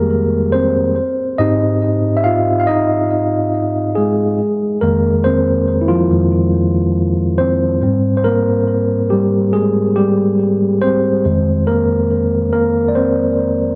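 A mellow, clean tine electric piano plays alone and up front through its built-in speakers, with delay, across this moody, longing R&B excerpt at 70 BPM in 4/4, moving between Fm7 and Abmaj7 over a range from F2 to F5, set in light reverb and digital ambience within a dark production.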